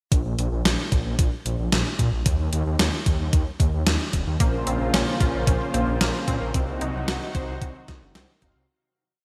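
A straight 4/4 synthwave pulse at 112 BPM opens with an overdriven, thumpy machine kick, a gated 80s drum-machine backbeat of snare and closed hat, and a thick, detuned, saturated saw bass running a sequenced sixteenth-note line, until at 4.4 seconds a lush, nasal chorused pad, a punchy, warbling eight-step pluck arpeggio with digital delay, and round, brassy phased synth-brass chords with syncopated pushes arrive over Bbmadd9 moving to Cdim, giving this short, nocturnal, moody piece its bright 1980s digital sheen as it fades out from 5.8 seconds.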